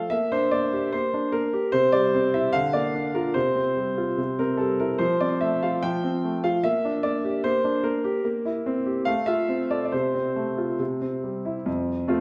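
In a rubato 2/4 at 73 BPM, this cheerful, playful classical-period piano sonatina in F major features a clear, open grand piano playing solo and up front from F2 to G5 with long sustain, its brief passage moving from Gm/Bb through C7/Bb and F/C to settle on F at 11.7 seconds, all bathed in the generous reverb of a recital hall.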